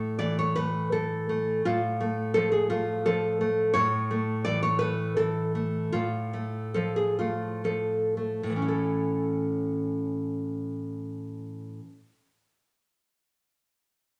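Bathed in a wet studio reverb, this tender, sunny romantic excerpt for solo classical guitar features an up-front, full-bodied nylon-string guitar that is fingerpicked with audible finger squeaks, playing from 0.0 to 12.0 seconds in a rubato 3/4 at 55-86 BPM in A major, alternating between A and F/A chords and slowing down from 2.7 to 8.7 seconds before a new section begins.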